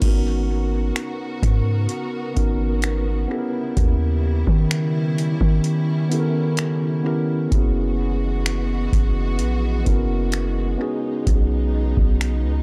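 A booming, dry analog drum machine sets a slow, straight 4/4 pulse at 64 BPM, with a deep kick, metallic hi-hat, finger snaps and crash cymbal sitting up front in this sensual, moody contemporary R&B excerpt in G# minor. A long, sine-like 808-style bass with a fast attack and natural decay anchors the low end, while a mellow tine electric piano with dub echo provides accompaniment and a lush, woody bowed string section with vibrato and sidechain pumping holds sustained chords. The harmony moves through G#m11, D#7b9b13, F#9sus4 and B69 in an echo-heavy digital ambience, and the drums drop out at 12.4 seconds.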